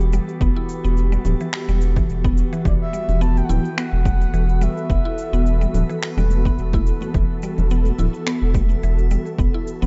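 This hypnotic, earthy slice of organic downtempo moves at 107 BPM in 4/4, its sixteenths carrying a light swing, with an overdriven layer of electronic cabasa, congas and finger snaps running throughout and a punchy, up-front electronic kick arriving at 0.4 seconds. A deep, round sine sub bass sits prominently beneath, pumping against the kick, while a mellow, detuned pad holds sustained E minor chords, breathing with the same sidechain pulse and washed in ensemble chorus and reverb. A woody, FM-style mallet pluck spins arpeggios through chorus and digital delay, and a faint glassy texture of drifting overtones hovers far in the background. From 2.7 to 6.3 seconds a soft, breathy flute-like lead with gentle vibrato floats above, trailed by tape echo, and from 3.4 seconds a small-room acoustic conga adds a distant layer. The whole passage, cut from a longer piece, has the dull, rough sound of a home demo, its top end rolled off.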